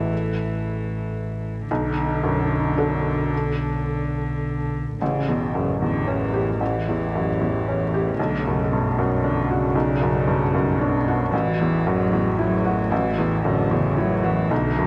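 A felt-muted upright piano sits up front in this melancholic, reflective neoclassical fragment, its mellow, intimate tone carrying audible action noise from the thin felt as it plays the accompaniment in a rubato 3/4. A single cello, bowed sul tasto with a soft attack, carries a second line whose pure, floating sound feels somehow both close and distant. Beneath them, one dark double bass, bowed sul tasto with an airy touch and light vibrato, holds the low end. At 6.1 seconds a very quiet, nostalgic pad of detuned square, triangle and sawtooth tones fades in slowly with chorus and phaser, sustaining lo-fi chords. The harmony moves from F#m7/A through Bm7 and A7, returning to F#m7/A, and the recording rests in a moderate concert hall reverb while a worn, warbling cassette-tape character lends the sound a gentle pitch drift.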